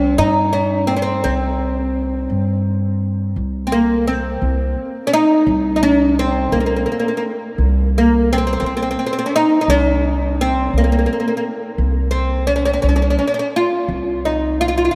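An oud and an upright bass open together, both up front, in this hypnotic, soulful Persian modal piece cut from a longer performance in C dastgah shur. The pulse is an unhurried 57 BPM counted in dotted quarters, in a straight 6/8. The fretless oud carries the melody in a compact middle range; its double strings, struck with a plectrum, give a bright, woody tone. Beneath it, the pizzicato upright bass holds the low end with a warm, steel-strung sound. Both instruments sound in a vast, echoing space that lends them a long cathedral-like tail, and the music moves into a new section at 3.4 seconds that continues until the clip ends at 14.9 seconds.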